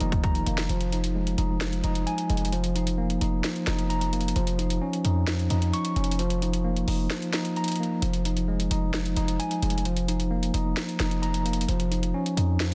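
A punchy, heavy 808-style bass with a sine body and a noise layer sits up front in this dark, melancholic trap excerpt at 131 BPM in F minor, moving in a half-time feel over chords built around Fm7, Eb5/F and Dbsus2/F. A clean tine electric piano plays arpeggios through tape echo, while a mellow, boxy concert grand with audible action noise murmurs in the background only until 0.7 s, under an opening drum fill. The overdriven trap kit pairs a hard-clipped kick and sharp snare with metallic hats, the kick dropping out between 7.1 and 8.0 s, all in a dry, dense, heavily limited modern mix.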